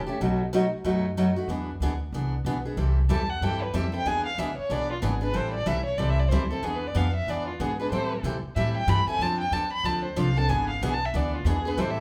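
A vibrato-laden bowed violin with expressive portamento sits up front and takes a solo from 2.8 seconds in this fiery, bittersweet excerpt of A-minor jazz manouche at 186 BPM, swung over a bright picked steel-string acoustic guitar and a woody, dark pizzicato upright bass in a large studio with moderate reverb.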